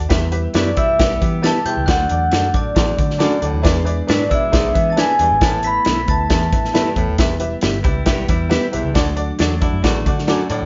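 The recording has the close, lightly reverberant sound of a band playing live in one room, with the top end rolled off for a soft vintage cast. This is an urgent, passionate slice of uptempo 1960s-style soul in E minor at 136 BPM, moving in a straight 4/4 through Em, D, E7 and Asus2. A punchy, up-front country drum kit of kick, medium-tuned snare and hi-hat drives it alongside a dark, round, foam-muted picked bass. A worn, slightly detuned upright piano and a flute-like tonewheel organ with key click and slow rotary speaker fill the middle, while a baritone saxophone with jazzy vibrato and a smooth top digs into a low riff. A fingered electric guitar adds background stabs, and a bright, twangy, direct-recorded guitar plays a compressed riff that drops out at 5.2 s and returns at 7.8 s. Out front, an airy vibraphone with soft mallets and slow motor vibrato sings the melody until 6.9 s, shadowed by a bell-like glockenspiel line tucked in the background.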